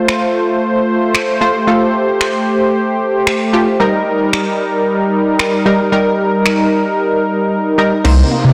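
A blown-out, overdriven recording steeped in lush hall reverb carries this bittersweet, energetic dance-pop excerpt at 113 BPM in straight 4/4: punchy, detuned sawtooth chord stabs with chorus and a smooth, bright analog pad with chorus and tremolo move from F to Eb over a tape-toned analog drum machine of crash cymbal, finger snaps and a soft-clipped snare, then after a silent gap at 7.5 seconds a drum fill arrives at 8.0 seconds alongside a deep, round bass up front and a woody, mallet-like FM pluck playing arpeggios with chorus and digital delay in the background, with an electronic riser entering at 8.2 seconds.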